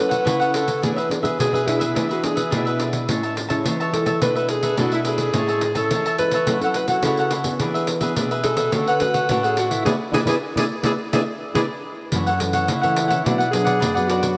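A breathy alto saxophone and thumb-plucked classical nylon-string guitar open this festive, joyful samba and choro fragment at 106 BPM, joined almost at once by a crisp, picked cavaquinho and a jingly, saturated pandeiro sitting up front. The close-miked sax sings an intimate, whispered jazz-style melody with vibrato, a soft attack and scooped notes over chords moving from F#m7 through Amaj7 and Dmaj7, while an ensemble chorus colours the guitar. After a band accent at 9.9 seconds, the sax takes a solo from 12.1 seconds, set inside a dreamy mix soaked in plate reverb.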